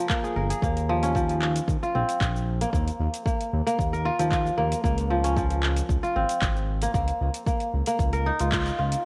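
A fingerpicked kora rings out crisp and up front with delay-tinged arpeggios from the first moment, carrying this meditative organic downtempo excerpt at 114 BPM over chords moving from Abmaj7(no3) to Eb5 and Db69. Underneath, a smooth, detuned sawtooth-and-square synth bass glides with portamento, while an overdriven deep electronic kick and a layered drum kit of cabasa, handclaps and metallic hi-hats drive a straight 4/4 pulse. Light reverb and a worn, warbling cassette-tape quality with pitch drift color the whole recording, and the band hits an accent at 8.5 seconds just before the cut.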